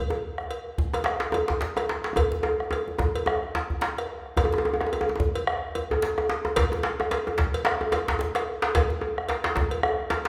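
Bathed in the long, wet reverb of a recital hall, this driving, powerful West African drum ensemble moves at 109 BPM in 4/4 with a swung sixteenth-note feel, cut from a longer piece. Up front sits a tight, cracking djembe with a vintage, band-limited tone, while a second, medium-tuned djembe played with soft hands sits close and dry in the background. A round bombo that carries its own live-room ambience and a metallic cowbell fill out the groove, and a drum fill from 2.2 s runs into a new section at 4.4 s.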